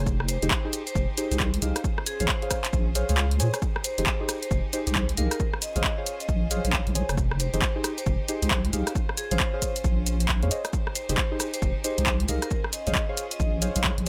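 A skippy two-step garage groove runs at 135 BPM in 4/4, its sixteenths swung at 62%, with a punchy analog kick and a drum machine of handclaps, hi-hat, rim click and shaker sitting up front. The kick briefly drops out from 3.2 to 3.6 seconds before returning. Underneath, a deep, dark wobble bass, saturated and compressed with chorus, holds the low end. A soft, nasal, full-bodied chord stab with chorus and delay plucks out the harmony, alternating between Fm7 and Bbm7 throughout this late-night F minor passage. In the background, a bright, ringing vibraphone struck with hard mallets carries the melody through a delay. A clear, biting violin section sustains chords with light vibrato and sidechain pumping, all set in a digital ambience.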